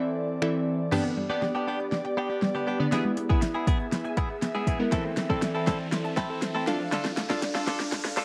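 Confident and energetic, this dance-pop passage at 120 BPM in 4/4 with a straight feel is cut from a longer piece, moving through Am/E, G, E, Am/E and Dm. Glassy digital keys and an airy, breathy pad open together at the start, both carrying chorus and sidechain pumping, the keys bright and warbling with a vintage edge while the pad holds soft, detuned chords with a slow attack and long release. A deep house drum kit arrives at 0.4 seconds, up front with a deep kick, fat snare, metallic hats, finger snaps and crash cymbal, and a drum fill runs through the build-up. From 0.9 seconds a twangy, clean electric guitar picks a compressed riff bathed in lush chorus, while a punchy, wave-folded unison pluck spins arpeggios in the background with digital delay and a moving notch. A filter sweep shapes the build-up, and an electronic riser enters at 3.8 seconds beneath the mix, all set in a dark production with light reverb.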